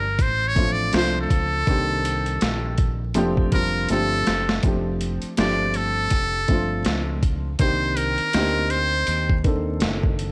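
Jazz-hop with a relaxed, smooth swing, this short cut from a longer piece opens on a buzzy, breathy muted trumpet solo, up front with a slapback echo, over a dark, woody upright piano and a round, deep fingered electric bass. A gritty, compressed boom bap drum kit with a thumpy kick and high-tuned snare comes in at 0.2 seconds, plays a fill from 3.9 seconds into the second section at 4.6 seconds, and the trumpet drops out at 9.4 seconds. The mix is dry, wrapped in vinyl crackle.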